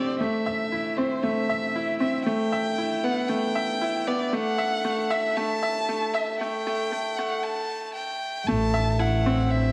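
In a straight 4/4 at 116 BPM, this moving, hypnotic piano-and-strings electronica fragment in A dorian sets a brilliant, woody upright piano riff beneath a dark, expressive solo violin melody with vibrato and portamento, filtered and up front, building through a filter sweep to a break at 7.4 seconds before an earthy chamber double bass section enters on the drop at 8.5 seconds, all in a dark, warm production with a moderate scoring-stage reverb.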